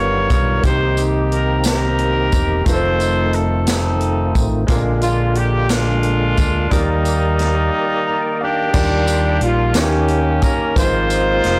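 A clear, vintage-toned horn section carries the melody up front in this hopeful, uplifting slow gospel excerpt, moving at 59 BPM in a straight 6/8 in E-flat major with a light vibrato. Beneath it, a round, amped fingered electric bass sits prominently, while a concert grand piano with audible action noise and long sustain, and a fat, percussive tonewheel organ with key click, chorus vibrato and a slow rotary speaker, fill in chords from the background. A swinging big-band drum kit with a punchy kick and medium-tuned snare joins at 0.3 s alongside a jingly, close and dry tambourine. The harmony moves from altered dominant and minor seventh chords toward a settled Ebmaj7, and at 7.7 s the piano and organ both play a short fill before the passage turns to a new section at 8.7 s, closing on an Ab6/9 chord. The whole mix sits in a light, small-room reverb but is blown-out and overdriven, giving it a gritty, saturated edge.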